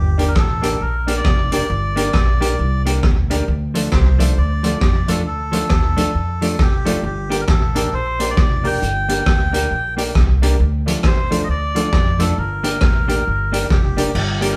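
A swung ska groove at 135 BPM in 4/4 drives this energetic, mischievous cut in G minor, taken from a longer piece and moving between Gm and Dm. A raw garage drum kit sits up front with a punchy kick, gritty saturation and a rolled-off top, marking time with hi-hat, rim click and crash cymbal. Underneath, a pizzicato upright bass on gut strings gives a thumpy, woody low end, while a clean electric guitar, dark and fingered, adds tremolo-tinged accompaniment. An intimate upright piano places clear stabs in the background, its action noise audible and its notes ringing long. Over the top, a reedy, nasal melodica carries the tune with a breathy, plastic-cased character and a slapback echo, the whole band heard playing live together in a stone room with moderate reverb.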